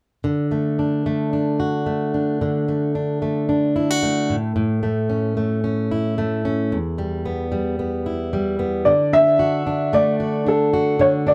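A dark, woody upright piano steps in at 8.9 seconds to carry the melody, its mellow, vintage tone sitting up front in the mix. Before that, a fingerpicked, plugged-in steel-string jumbo acoustic guitar plays the accompaniment on its own from 0.2 seconds, sounding full-bodied and close. The guitar moves through D, A and Em before returning to D just as the piano arrives and the music shifts into a new section. This easy-going, carefree pop excerpt has a gentle 16th-note swing in 4/4. It sounds like a band playing live in one room, with a touch of light reverb around the instruments.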